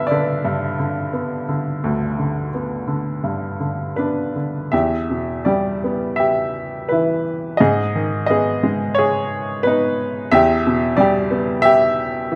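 Up front in a moderate recital-hall reverb, a clear, woody, slightly detuned upright piano plays a relaxed, lyrical classical solo in G major at a rubato 79-90 BPM in 4/4, its short-sustained notes ranging from D2 to E5 as the harmony shifts from G to E minor at 4.7 seconds, touches G-sharp minor at 7.6 seconds and returns to E minor at 10.3 seconds before this fragment of a longer piece breaks off.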